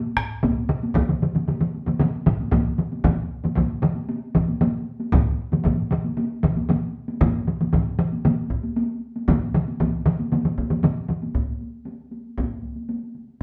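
Ceremonial and driving, this excerpt of Japanese traditional taiko drumming moves at 116 BPM in a straight 4/4, cut from a longer piece. A solo taiko drum struck with heavy sticks sits close, dry and up front from 0.2 seconds until 11.2 seconds, alongside three taiko ensemble parts: one with heavy sticks in a live room, one with hard sticks heard close, and one with hard sticks in a small room, the close hard-stick part carrying on until 13.3 seconds. The group plays live together in one space, wrapped in a short, wet studio reverb, with the music shifting through three passages over its brief length.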